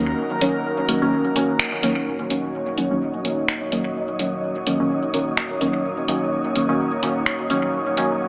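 Hazy and cavernous, this dub techno piece moves at 127 BPM in 4/4 with a light swing on the sixteenths, resting on an Ebm7 chord in Eb minor. Up front, a deep, mellow chord stab with triangle, sawtooth and sine tones evolves under a filter sweep, its decaying hits smeared by chorus, phaser and dub echo. An airy pad of detuned, breathy layers holds sustained chords with a slow attack and long release. Beneath them a round sine sub bass sits in the background, while a layered, tape-tinged deep house kit of finger snaps and hi-hat enters at 0.4 seconds, its parts trailed by dub echo, and the band hits an accent at 1.6 seconds. From 2.8 seconds a dark, wind-like tuned noise texture drifts in with its own reverb, and the whole mix sits in a lush hall with a small-speaker character.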